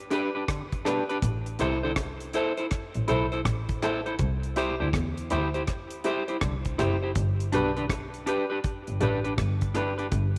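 A clean, dark electric guitar with tape echo opens this sunny, uplifting roots reggae excerpt alongside woody upright piano stabs in the background, a dry, tight-kicked drum kit up front and very quiet, high-tuned bongos, while a faint overdriven clav adds stringy arpeggios from 0.5 s and a bowed double bass with vibrato enters at 1.2 s, the band sitting in a moderate echo-chamber reverb.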